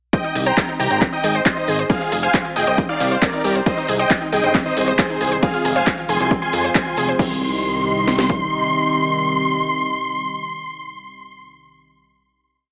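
A straight four-on-the-floor kick and cracking snare from a techno kit, joined by tape-warm analog drum-machine claps along with hats and crash that pump to the sidechain, drive this bittersweet uplifting trance piece, where a huge, euphoric supersaw lead with digital delay plays a repeating riff in thirds and sixths over a bright, wave-folded eight-step pluck arpeggio and a fat, detuned off-beat bass, each pumping, until a warbling, chorused unison pad enters at 3.7 seconds and holds the final chord with the lead through to 11.5 seconds, the mix heavily compressed into a small-speaker radio sound with light reverb.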